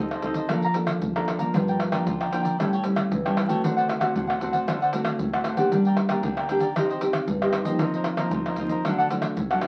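A bright, crisply picked cavaquinho accompanies this nostalgic, bittersweet samba and choro fragment in G minor at 115 BPM, alongside a warm, fingerpicked classical nylon-string guitar and up-front percussion of egg shaker, pandeiro, tamborim and a tight surdo, played with soft hands and sounding compressed and saturated, all bathed in wet studio reverb and the crackle of a very old 78 rpm record as the chords move from F7 through Gm7, A7 and D7 to land on D at 8.9 seconds.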